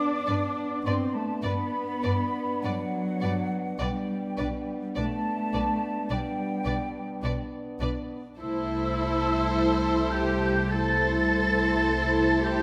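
This excerpt from a slow, romantic orchestral movement opens with a hollow, pure-toned flute section, a dark, distant French horn section holding soft-edged chords, and muted cellos carrying the bass. At 0.3 seconds the other strings join, all playing con sordino: veiled violins sing the lyrical melody with vibrato, a lush second violin section and the violas sit in the background, and the double basses sound close and up front alongside the cellos. The tongued, mellow flutes trace a second line high above, while the horns sound roomy and tight as a section. The rubato feel and a harmony that moves from G to G/B and then to Am/C give the passage a serene, unhurried calm. A moderate scoring-stage reverb surrounds the ensemble, and the passage runs to 12.6 seconds as part of a longer piece.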